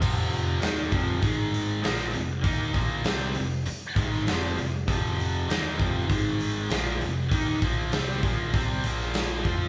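Anthemic and energetic, this short hard rock cut from a longer piece drives in straight 4/4 as a band playing live in one large room, with a cranked stack guitar and a scooped, high-gain guitar both picking bright riffs from F2 to F4 over F5, Ab5 and Bb5 power chords, a growly, punchy overdriven bass, and a big acoustic drum kit with a tight kick, medium-tuned snare, hi-hat and crash cymbal sitting up front with a rolled-off top, all running from 0.0 to about 9.7 seconds under moderate studio reverb.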